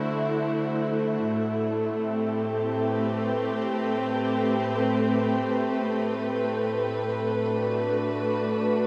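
Unfolding in free time, this brief ambient fragment drifts with a reflective, spacious mood in A dorian, tuned to A4 = 439 Hz. A studio string section carries the music alone for its full 8.9 seconds, bowed sul tasto with light vibrato and a soft attack across a range from A2 to C5. The ensemble sits up front, close and intimate, with a dark tone and a touch of delay on the strings. A shimmering reverb with a 9.3-second decay surrounds the sound and gives it a wet, shimmering halo. The harmony moves from D9 at the start to Am9 at 1.3 seconds, where it rests for the remainder of this single section, cut from a longer piece.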